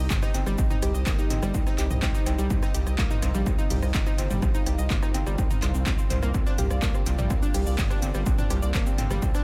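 Sustained chords from a lush, detuned pad sit in the background alongside warm arpeggios from a bright, sawtooth-edged analog pluck and a round, deep analog bass, all three starting together in this melancholic, dark melodic techno cut taken from a longer piece. At 125 BPM in a straight 4/4, the harmony rests on C minor before moving to Bb at 6.3 seconds. The pad carries chorus and phaser, the pluck adds chorus and analog delay, and the bass stays mellow and evolving, with sidechain pumping shared across all three. A punchy, tape-tinged electronic kick sits up front in a small room, layered with a deep house kit of handclaps, smooth hi-hats, rim clicks, shaker and toms treated with dub echo. Far back, a very quiet soft-mallet acoustic kit adds distant hi-hat, dark ride cymbal and a medium-tuned snare, and the whole mix is steeped in echo-heavy studio reverb.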